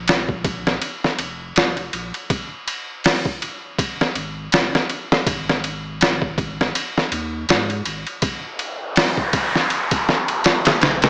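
A swung sixteenth-note groove at 81 BPM in 4/4 sets a hypnotic, brooding trip hop mood in this short section cut from a longer piece. The sampler-style drum kit sits up front from 0.1 seconds, its thumpy kick, medium-tuned snare, hi-hat and ride cymbal compressed, pitched down and coated in vintage 12-bit grit with a small room reverb and a tape-like warmth. Beneath it, a deep, round sine sub bass holds the low end between F1 and Ab2 from the very start, its notes arriving with a fast attack and sustaining in a mellow, warm hum well below the drums in level. At 8.5 seconds an electronic noise sweep enters and carries through to the close. A moderate plate reverb glues the mix together, while the overall sound has the character of a small speaker.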